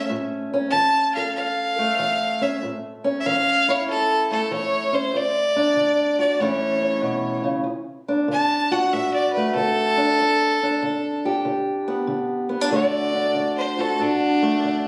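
Swaggering and laid-back, this excerpt of acoustic country blues moves at an easy 95 BPM in 4/4 with a swung eighth-note feel, in D major. A clear, bowed fiddle carries the melody up front, its biting, intense tone softened by a smooth top and a light vibrato. Beneath it, a fingerpicked steel-string parlour guitar gives a dark, boxy accompaniment, also close and present. The harmony moves from A to D and back before the second section opens at 7.7 seconds, where the fiddle takes a solo over D, G and D. Captured on a phone in the room, the sound carries a touch of studio reverb and compression.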